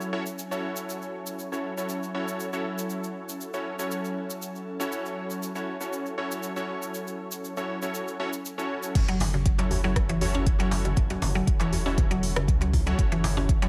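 Earthy and hypnotic, this afro house excerpt moves at 119 BPM in a straight 4/4, sitting on an F#m7 chord in F# minor. It opens with an ethereal, slow-blooming pad holding sustained chords under built-in reverb and ensemble chorus, while detuned sawtooth analog keys play bright stabs up front with tape echo, and a grainy, close cabasa ticks along until 8.9 s. Both the pad and the keys breathe with sidechain pumping. At 9.0 s the drop arrives: a deep, up-front electronic kick anchors the groove, a round sine sub bass pumps underneath, and an afro-pop kit adds crash cymbal, smooth filtered hats and rim clicks. A woody FM mallet pluck spins arpeggios with chorus and tape echo, joined by distant, low-tuned congas and a band-limited djembe with metal rattles sitting in the background, all wrapped in light reverb.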